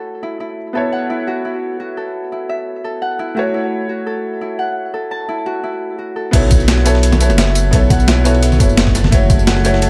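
Melancholic and lush, this short liquid drum and bass passage at 172 BPM opens with a clear, worn baby grand piano up front and a ringing, fingerpicked Celtic harp playing arpeggios, both softened by a low-pass filter and delay over F#m7 and B9sus4 chords. At 6.3 seconds the drop arrives: a smooth, nasal, detuned synth bass sits up front alongside a thumpy, overdriven electronic kick and a gritty breakbeat kit with crash, hi-hat, snare and tambourine. Behind them sit a tape-warm soul kit with filtered ride and snare and, from 6.5 seconds, very quiet, bright congas, all inside a dark production with light reverb.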